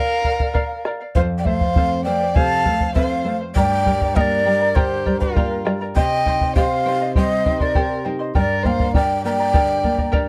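Earthy and melancholic, this short cut from a longer piece of Andean folk moves in a straight four-beat feel, carried by an Andean ensemble. A large quena leads the melody with a breathy, end-blown wooden tone, soft attacks, vibrato and an unsteady quality, close-miked and up front, while a single dark violin bows a second line with a woody, vibrato-tinged voice. A fingerpicked charango shimmers on its doubled strings in the upper register, and from 0.2 seconds a round, dry bombo sets the percussion close by. A nylon-string guitar joins at 1.2 seconds, adding a full-bodied, deep classical accompaniment with audible finger squeak. The chords drift from Bb and F through G minor and C minor before settling back on G minor, all under a light reverb in a dark, warm production.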